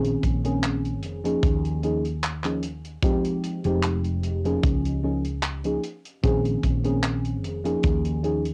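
A mellow FM electric piano, a woody fretless bass and a drum kit of handclaps and hi-hat open this hazy, melancholic vaporwave piece together, with a punchy acoustic kick joining at 0.2 seconds. The electric piano sits up front with a soft, warbling vintage tone, a faint noise layer and fast, decaying notes, coloured by subtle chorus, tape echo and cassette grain. Beneath it the fretless bass sounds dark, round and hollow-bodied, carrying the low end. The drums are mid-forward and recorded in a studio room, their cassette saturation matching the piano's. The slightly swung groove moves through Bbm11, Eb9sus4, Fm9 and Db69 before returning to Bbm11, and a light reverb wraps the whole cut, which is taken from a longer piece and ends at 8.5 seconds.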